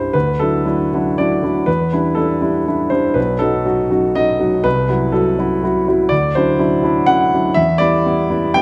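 A warm grand piano plays alone throughout this brief excerpt of neoclassical minimalist music, its smooth, vintage tone sitting up front in a close, detailed recording with light reverb. The mood is wistful and reflective, and the playing moves with a rubato feel in triple metre. The piano spans a range from B1 up to G5, and a slapback echo on the instrument adds a doubling to its voice. The harmony drifts through Dadd9, Em7, B7 and F#m7b5/C before returning to Dadd9 at 6.1 seconds and settling on Em7 at 7.6 seconds. Cut from a longer piece, the passage runs to 8.6 seconds.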